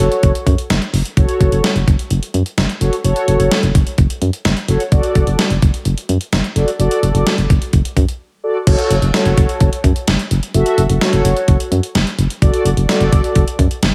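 A lush hall reverb gives this synth-pop excerpt a big arena sound, cool and driving at 128 BPM in a straight 4/4, in F# minor. A clean 12-bit digital drum machine sits up front with a thumpy kick, a medium-tuned snare, hi-hat and crash cymbal, its sampler-style hits carrying a tape-warm character from being re-recorded in a small room. Alongside it, a solid FM bass plays punchy, round notes with a fast attack that decay. The mellow synth brass supplies the accompaniment with a full-bodied, detuned sawtooth tone, colored by chorus, vibrato and a filter sweep, and it drops out at 13.4 s, just before the other parts finish. The harmony moves between F#m and D/F#, and a brief break from 8.2 s to 8.7 s sets up the return of the opening material.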